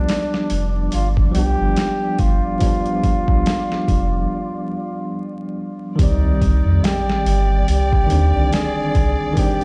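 Heard as if through a big sound system in a bare stone room with vinyl crackle, this brooding, hypnotic trip hop fragment sets a veiled, distant bucket-muted trumpet with dub echo over a bell-like tine electric piano with tremolo, a round, deep dub sub bass and a gritty, overdriven boom bap sampler-style drum kit up front, while a flickering grainy texture hovers in the background until 4.3 seconds and a rich bowed string section and a very quiet electronic sub drop arrive at 6.0 seconds.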